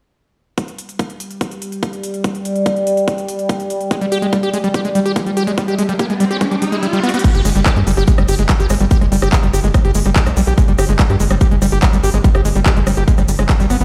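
Psychedelic trance at 144 BPM, driving and intense, opens with a tight, up-front electronic kick and a crisp-hatted dance kit of crash, handclaps, hi-hat and rim click, soon joined at 1.3 seconds by a detuned, slow-attack drone holding sustained chords around G3 under a filter sweep with chorus, reverb and sidechain pumping. From 3.9 seconds a squelchy, screaming acid riff between G3 and G4 cuts through with distortion, chorus and tape echo, an electronic riser builds, and the kick drops out briefly before a drum fill at 7.0 seconds. At 7.2 seconds the second section arrives with a grainy tube shaker tucked in the background, and a punchy, nasal sequencer bass follows in the low register at 7.3 seconds, all heard through a stone room on a big sound system.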